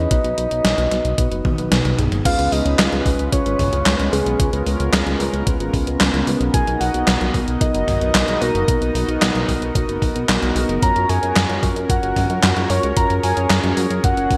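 Synthwave at 112 BPM in a nocturnal, cinematic mood, where a round, vibrato-tinged octave-layered synth lead carries the melody through chorus, delay and shimmer reverb over clean tine electric piano stabs, a glossy chorused pulse bass with sidechain pumping, a thumpy electronic kick and an up-front, tape-warm 80s drum machine of gated-reverb snare, handclaps, hi-hat, toms and crash that plays a fill from 1.4 to 2.3 seconds, before a shimmering, detuned pulse-width pad enters at 2.3 seconds on sustained chords moving through Db7, Bmaj7 and Gbmaj7, all set in a lush hall of bright 1980s-style digital sheen.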